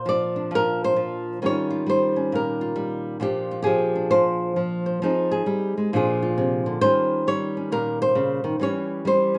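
A dark, fingerpicked flamenco guitar sits up front, playing alone throughout this short solo jazz excerpt of 9.4 seconds at 134 BPM in 4/4, with a swung eighth-note feel. The mood is warm and relaxed as the acoustic guitar moves through Bbadd9, Eb9, Bb9 and Fm7, then back through Bb9 and Eb9, before landing on Em6 at 8.6 seconds. The recording was made outdoors and carries a light reverb.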